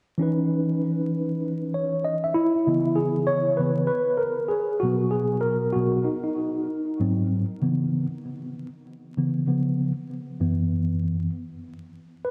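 A mellow, clean tine electric piano sits up front, heard as if through built-in speakers and trailed by a diffuse ambient delay. It carries this cool, mellow hip hop fragment alone from 0.2 seconds and takes a solo from 2.7 seconds over chords moving from C#m9 through Bmaj7 and G#7 to F#7sus4. The tempo is 97 BPM with a 16th-note swing in C# dorian, and the dreamy mix is soaked in a lush hall reverb with a bed of vinyl crackle.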